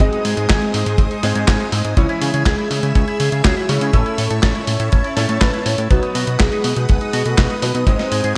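Bright 1980s-style digital production with light small-room reverb frames this melodramatic, danceable Italo disco excerpt at 122 BPM in C# minor, where a round, octave-layered triangle-and-sine synth lead carries the melody through chorus, phaser, cassette tape and digital delay over lush string-machine chords, dark envelope-filtered electric guitar arpeggios, clear grand piano stabs in the background, a fat, detuned sawtooth analog bass, a gritty sampler-style kit of handclaps, hi-hat and snare bathed in gated reverb, and a tight, up-front kick, all moving through G#, C#m, A and B.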